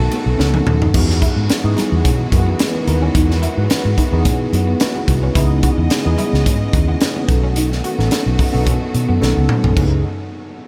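Polished 1980s jazz-funk pop with a nocturnal, urban mood, cut from a longer piece, where a round, punchy, foam-muted fingered bass and a gritty, saturated fusion drum kit with a high-tuned snare and tight kick sit up front beneath a mellow tine electric piano with analog chorus, lush bowed strings with vibrato holding sustained chords, a very quiet dark clean guitar riff and distant, high-tuned congas, all bathed in a huge dreamy reverb, with drum fills at 0.4 and 9.2 seconds framing chords that move from Emaj9 through C#m9 and B7.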